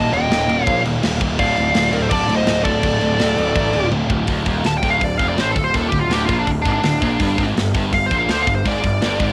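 Epic and aggressive, this heavy metal excerpt at 165 BPM in D phrygian sets a dark, high-gain lead guitar up front over two bright, distorted background riff guitars, one scooped, plus a growly fuzz bass and a tight drum kit with bright cymbals, while a nasal parked-wah guitar adds a second line until 3.9 seconds, when a drum fill launches the lead guitar solo at 4.3 seconds, all with a cassette home-recording character in a small room.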